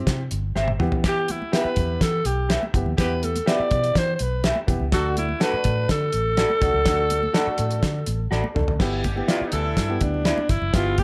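Piano and a round, foam-muted fingered bass open this joyful, danceable 1960s-style soul cut at 124 BPM in G major, joined at once by a thuddy, cloth-damped drum kit with a fat snare and dark cymbals, very quiet high-tuned congas, slightly broken-up guitar stabs from 0.6 seconds and a tight, clear horn section in the background, while a raspy, punchy alto saxophone carries the melody up front from 1.1 seconds and takes a solo over a G6 chord after a drum fill at 8.8 seconds, all under light reverb.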